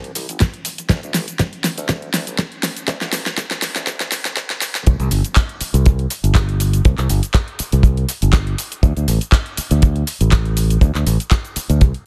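A lightly swung sixteenth-note groove drives this groovy, sunny nu-disco excerpt, where a growly, punchy fingered electric bass and a layered electronic pop kit of fat snare, bright hi-hats, shaker and handclaps share the front with a tight, dry acoustic kick that enters at 0.4 seconds, building through a drum fill and filter sweep until the drop lands at 4.9 seconds, all set in a small room within a dense, heavily limited modern master.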